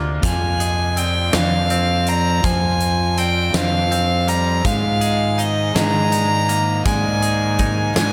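Post-rock in a slow, straight 6/8 at 54 BPM counted in dotted quarters, this brief passage from a longer piece feels brooding yet cathartic as it moves from F minor to an A-flat suspended chord at 4.6 seconds. An icy, crystalline glass pad with a slow attack and long release sits very quietly underneath, holding sustained chords, while a twangy, clean electric guitar picks arpeggios through phaser and digital delay. A vibraphone struck with hard mallets adds metallic, ringing arpeggios in the background, also trailed by digital delay. Up front, a growly fuzz bass played with the fingers anchors the low end with overdrive, and from 0.2 seconds a single close, biting violin carries the melody with an airy bow and a nasal, earthy edge, its lines echoed by digital delay. A huge arena drum kit enters at the same moment, with a fat snare, punchy kick and hi-hat ringing in a big room, all set in a generous studio ambience.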